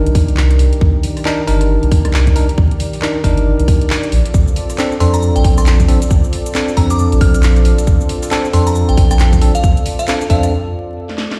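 Late-night and soulful, this swung two-step UK garage excerpt at 136 BPM moves from Cm9 to Bbmaj7 as a smooth, detuned sawtooth pad pumps beneath bright, bell-like electric piano stabs trailing dub echo, a round, tube-saturated sub bass sits up front beside a tight kick, the small-room garage kit adds a cracking snare, handclaps, rim clicks, shaker and warm hats, and a glassy, crystalline FM bell melody enters at 5.0 s before a brief break at 10.5 s and a drum fill at 11.1 s, the whole mix carrying vinyl crackle and the weight of a big sound system in a bare room.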